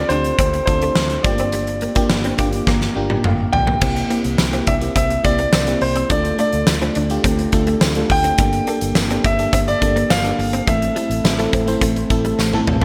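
A huge, up-front arena drum kit with a punchy kick, fat snare and bright cymbals drives this nostalgic, moody 1980s-style pop excerpt in D minor at 105 BPM, its gated reverb sitting inside a lush hall and a bright digital sheen, with drum fills around 2.7 s and again at the close. A clear, intimate grand piano carries the melody with its action noise audible, over a glassy, bell-like FM electric piano whose chorused, warbling chords fill out the accompaniment and break into a fill near 2.1 s. A round, foam-muted fingered bass and a very quiet, compressed clean guitar riff support the harmony, while a jingly tambourine joins in the background from 4.4 s as the chords move from Dm7 and Gm7 through C7 to Am.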